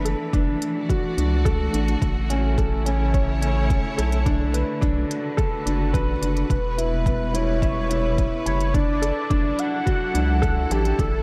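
Piano and strings electronica at 107 BPM in an intimate, melancholic mood, where a woody upright piano riff with audible action noise, carried on digital delay and shimmer reverb, sits up front over lush bowed string chords and a round, deep analog bass that both pump against a punchy layered kick and crisp electronic hats, until a velvety, detuned synth lead with chorus enters at 6.5 seconds in this short cut from a longer, darkly produced piece moving from Dadd9/F# through A, Bm7 and Em.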